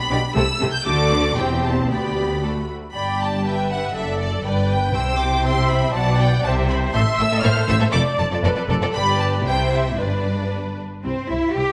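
A focused, bowed violin melody opens this lively, cheerful classical-period movement for string orchestra in a quick 2/4 at 119 BPM. It is joined almost at once by a more distant second violin line, smooth viola accompaniment, and a bass of expressive cellos with soft attacks and portamento alongside woody double basses, all bowed with vibrato. Set in a moderate scoring-stage reverb, this extract moves from G major to C major at 6.9 s before breaking off around 11.7 s.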